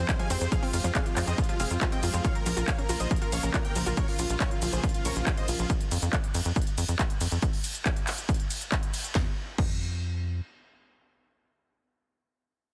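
Bittersweet and emotional, this excerpt of uplifting trance at 139 BPM in a straight 4/4 opens mid-drop on Fmadd9 moving to Bbm at 2.2 seconds. A huge, detuned supersaw carries the melody with sidechain pumping and tape echo, joined by a very quiet, round analog pluck on a second line and a lush, warbling unison pad holding chords in the background with chorus. A wave-folded unison pluck spins arpeggios beneath them, also pumping and echoing, until both plucks drop out around 4 seconds; the supersaw and pad fall away near 5.7 seconds, where the chords stop. The tight, nasal sequencer bass drives on through tube saturation and pumping until 10.4 seconds. A punchy electronic kick and a techno kit with a cracking snare, smooth hats, handclaps, shaker, ride and crash sit up front with a tape-warm, small-room character, all within digital ambience and a dense, heavily limited modern master.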